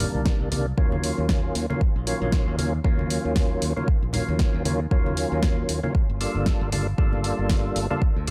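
Percussive tonewheel organ stabs open this smooth, hypnotic deep house excerpt at 116 BPM with a 16th-note swing, lightly overdriven and up front with key click, chorus vibrato, slow rotary speaker, tape echo and sidechain pumping over Cm9, Ebm9 and Gm9 chords, alongside a bright, growly fingered electric bass that pumps with the sidechain, a tape-warm drum kit with hi-hat and a fat snare, and hard-hand congas in the background, all entering together, before a deep, layered electronic kick lands up front at 0.3 s, all captured in a dry, gritty hardware recording.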